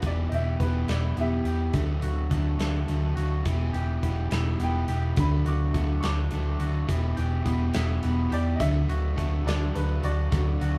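In a straight-feeling 6/8, this bittersweet, cool indie rock fragment rocks between E minor and D chords, with a big rock drum kit (punchy kick, medium-tuned snare, hi-hat, rolled-off top) and an up-front, amped picked electric bass anchoring the low end. A crunchy overdriven guitar and a clean, fingered, twangy electric guitar treated with analog chorus and digital delay share the riff. A bright, woody upright piano, intimate enough that its action noise is audible, carries the melody as a solo throughout, its delay adding trails within the small room ambience of a rough home demo mix.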